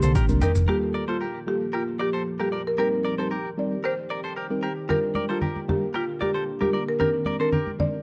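Afrobeats in a joyful, sunny mood, this short excerpt cut from a longer piece opens with a drum fill on an electronic afro-pop kit, its deep kick, shaker and toms overdriven and up front, joined by a punchy, round fingered electric bass; both drop out by 0.7 seconds. A deep, moody ambient pad sustains evolving chords through chorus and its own reverb, while a clean, direct-recorded electric guitar plays a twangy, scooped riff with subtle chorus and delay. A soft, full-bodied FM electric piano adds accompaniment colored by chorus and phaser, and a buzzing marimba struck with medium mallets carries the woody, dry melody with delay. Bright, thin-skinned congas tap briefly near the start and return at 4.9 seconds. The harmony moves from Cm9 through Gm9, Eb6 and Bb6 before landing back on Cm9, all wrapped in light digital ambience and a worn cassette warble with drifting pitch.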